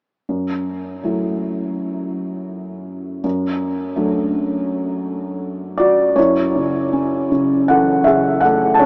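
A felt-muted upright piano, mellow and intimate with audible action noise and thick felt sitting up front, plays alone in this dark, reflective classical fragment, moving with rubato from F#m7 to D/F# and back to F#m7 as a new section begins at 6.2 seconds, all set in a huge, echoing ambient reverb with a small-speaker character.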